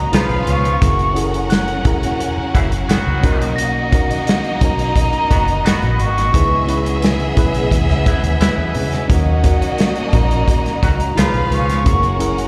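A straight 4/4 groove at 87 BPM from an up-front soul drum kit with a tight kick and a round, foam-muted electric bass carries this silky, smooth 1970s-style soul fragment in C# dorian, where an airy, hollow jazz flute sings the melody over a lush, distant violin section, a reedy, lightly overdriven electric piano, a very quiet dark string section holding chords, a faint clean electric guitar riff, tight vintage horn stabs, and a soft, bell-like glockenspiel that rings in the background until 9.6 seconds, all heard through a live venue's PA with recital-hall reverb, while the chords move from C#7 and F#7 through Bmaj7, C#m9 and D#m7 before returning to C#7 and F#7.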